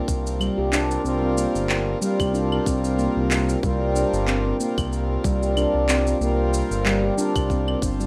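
A rough home demo mix sits in a wet studio reverb, giving this short cut from a longer piece an intimate, lived-in sound. It is a hypnotic, meditative slice of organic downtempo in 4/4, with a gentle swing on the sixteenths and a single G minor chord held throughout. A reedy, breathing pedal harmonium sits up front as accompaniment, treated with sidechain pumping, delay and plate reverb. Alongside it, a ringing stainless-steel handpan spins dark, smooth arpeggios, also dressed in delay and plate reverb. Underneath, a smooth gliding synth bass blends sawtooth and triangle tones with a moving notch, a fast attack, sustained notes and vibrato, staying mellow and close. A tight electronic kick and a layer of electronic shaker, claves and handclaps, both tape-warm and re-recorded in a large room, keep the pulse from 0.1 seconds to the end.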